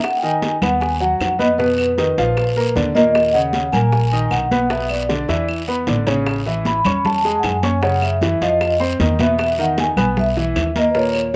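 A mellow vibraphone played with soft mallets carries the melody in this driving, sultry Afro-Cuban jazz excerpt in G# minor, its metallic, ringing tone shimmering with a medium motor vibrato and a touch of slapback echo. A clear, polished concert grand piano sits up front in accompaniment, with deep bass and short sustain, also lightly treated with slapback echo. An upright bass joins at 0.6 s with thumpy, dark pizzicato on gut strings. Behind them, at a straight 154 BPM in 4/4, high-tuned congas ring with hard hands, tight bongos with slapback echo are played with soft hands, woody claves click, and a raspy, saturated guiro scrapes, with a drum fill at 5.3 s. The harmony moves through rich chords such as G#m7, Bmaj7#11 and Amaj9, and the sound is dry, recorded outdoors with little reverb.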